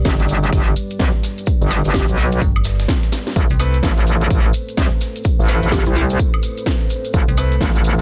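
A gritty, aggressive bass house cut opens on a deep, moody analog pad holding dark, very quiet chords, alongside a metallic, tube-saturated FM bass and grainy, close maracas set in the background. Almost at once a saturated wobble bass with chorus pushes up front, pumping against a punchy, tape-warm electronic kick. A house kit with a cracking snare, hi-hat and woodblock, recorded in a small room, drives the swung groove, while a compressed, sampler-style soul kit with tambourine sits very quiet underneath. A brief woody, warbling synth pluck with chorus and dub echo flickers in twice. The harmony moves from G to Amadd9 at 3.4 seconds, just after a drum fill; a brilliant grand piano with audible action noise adds pumping, echoing stabs from 3.6 seconds, and the FM bass drops out at 3.8 seconds. A digital ambience surrounds the whole mix.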